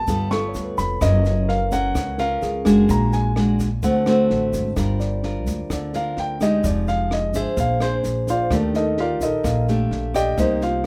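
A straight bossa nova groove in 4/4 from a compact cocktail drum kit, with its punchy kick, rim clicks and high-tuned snare, and a grainy tube shaker in the background carries this wistful, melancholic passage from a longer piece, where fingerpicked nylon-string guitar with audible finger squeak, woody pizzicato upright bass and a barky, lightly overdriven tine electric piano support an intimate, up-front grand piano whose action noise can be heard as it moves into a solo at 4.8 seconds, all set in a light reverb.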